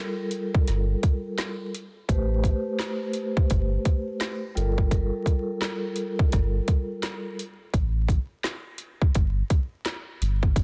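Tough yet reflective, this boom-bap hip-hop groove moves at 85 BPM with a 62% sixteenth-note swing, cut from a longer piece and passing through Gm9, Am9 and back to Gm9 before settling on Gsus2. A ringing, mellow vibraphone played with soft mallets opens the track and carries a fast motor vibrato and a cassette-tape haze in a boxy small room, playing until 7.4 seconds. Tight kick, woody snare, metallic hi-hats and handclaps from a layered electronic kit sit up front beside a deep, sustained sine sub bass, all under a dense, heavily limited master dusted with vinyl crackle.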